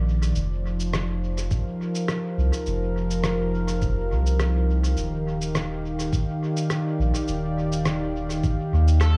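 A lightly swung 4/4 groove sets this peaceful, spacious ambient dub fragment in motion, with a muffled, pitched-down electronic shaker and rim click trailing dub echo from 0.2 s and a compressed, thumpy, tape-toned kick joining up front at 1.5 s. A smooth, detuned sawtooth pad with chorus and a slow attack holds mellow chords from F7sus4 to Ebmaj9 over a deep, round sub bass, all set in a light digital ambience. At 9.0 s a bright, overdriven electric slide guitar sounds a single note on a band accent just as this cut from a longer piece ends.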